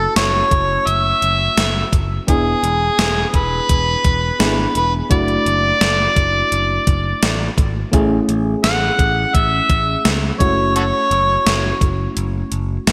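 A gated 1980s digital drum machine lays down a straight 4/4 pulse at 85 BPM, its thumpy kick, hi-hat and gated-reverb snare sitting up front with a tape-warm, small-room character, entering at 0.2 seconds just after the other parts. This short, glossy and uplifting stretch of 1980s-style pop is cut from a longer piece, and it moves through F#m7, E7, Dadd9/F# and Amaj7 before returning to F#m7 at 10.4 seconds. A bright, growly picked electric bass holds the low end with a direct tone, while an FM electric piano supplies dark, fast-attack chords that decay over a noise layer. The lead belongs to an overdriven, amplified harmonica, gritty and punchy with light vibrato and tongue slaps, carrying the melody up front through a digital delay until it drops out at 11.8 seconds. A lush hall reverb and sparkling digital production give the whole a polished sheen.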